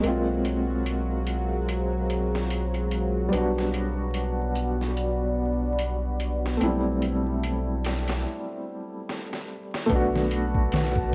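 Smoky and hypnotic, this trip hop excerpt moves at 73 BPM in B phrygian with a swung 16th feel, built on a gritty, thumpy sampler-style drum kit, a round dub sub bass holding B1, and a felt-muted upright piano that sits up front with an intimate, mellow accompaniment colored by tremolo, tape echo and lo-fi sampler grit. A moody, warbling ambient pad enters at 1.1 s with sustained chords, while a nasal, tense bowed-like drone hovers in the background until 8.3 s, when a break opens and a drum fill leads into a brief new section at 9.9 s on Bm7. The whole recording carries the character of a home cassette with vinyl crackle and light digital ambience.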